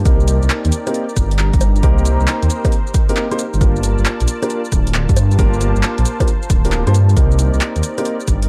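A deep, rumbling detuned saw bass sits up front from the first moment, beneath a smooth analog pad and a warbling, lo-fi tape-like pad pumping softly in the background, as an overdriven kick and a punchy analog drum machine of bongos, handclaps, hi-hat, rim click and shaker drive this bouncy, late-night two-step UK garage cut at 135 BPM with a swung 16th feel, while grand piano stabs with delay trace Cm7 to Gm7 and back in a dark, dry production.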